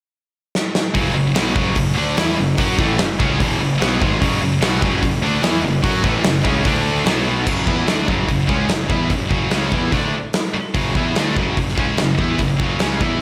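A big arena sound with a lush hall reverb frames this menacing, driving hard rock excerpt, which opens on a drum fill from 0.5 s before a full acoustic kit of punchy kick, medium-tuned snare, hi-hat and crash sits up front with a rolled-off top. A high-gain guitar with slapback echo riffs up front beside a bright overdriven stack guitar set in the background, while a fuzz-soaked picked bass adds an overdriven low end. A very quiet, compressed, double-tracked distorted guitar joins the riff only from 4.2 to 7.5 s, as the chords shift from F#m through D5 and B5 before the second section begins.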